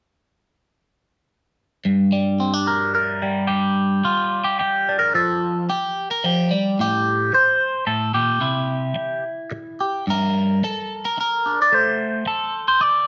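A twangy electric guitar at the edge of break-up carries this wistful, melancholic folk excerpt alone from 1.9 to 13.1 seconds, its bright, picked tone sitting compressed and up front with a phaser coloring the sound. In G dorian at 110 BPM in 3/4 with a rubato feel, it moves through Gm, G5, Fadd9, Am7 and C before returning to Gm and ending on a chordless stretch at 11.7 seconds. A moderate large studio reverb lends the solo a spacious, lingering air.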